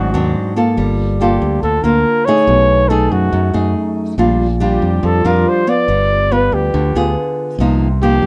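A straight 4/4 bossa nova groove at 141 BPM carries this romantic, sunny fragment of a longer piece, where a mellow flugelhorn sings a jazz-style solo melody with light vibrato over fingerpicked nylon-string guitar, its fresh strings giving off audible finger squeak, and a bright, direct fingered electric bass, all three sitting up front in light reverb as the harmony moves from Ab7#11 through Gm9, B13, Bb6 and G7b9 to Cm7.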